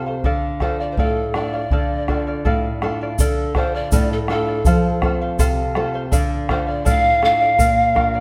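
Wistful yet festive Andean folk in 2/4, cut from a longer piece, where a breathy bamboo pan flute with vibrato and a chiffy attack carries the melody from 0.6 s over a shimmering, double-strung charango, a full-bodied, fingerpicked nylon-string guitar and a round, up-front bombo that enters at 0.2 s, joined from 3.2 s by a grainy tube shaker, within a wet recital hall reverb.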